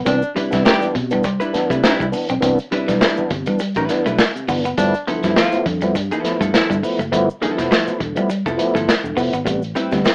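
Cool and hypnotic, this funk excerpt rides a swung sixteenth-note groove at 102 BPM, moving from Cmaj9 to G13 at 4.8 seconds and landing on Am9 at 9.5 seconds. A gritty, saturated breakbeat kit sits up front with a tight kick, medium-tuned snare and hi-hat, its top rolled off, while a grainy tube shaker hovers in the background. A foam-muted fingered electric bass supplies a dark, round low end beneath a clean, compressed electric guitar riff and a fat tonewheel organ playing stabs, its key click and vibrato colored by a slow rotary speaker and tube saturation. From 0.4 seconds a hollow-body jazz guitar adds picked, compressed accompaniment close to the listener. A breathy tenor saxophone carries a whispered, intimate second line with scooped notes until 6.8 seconds, all inside a rough home-demo mix with light reverb and an AM-radio tone.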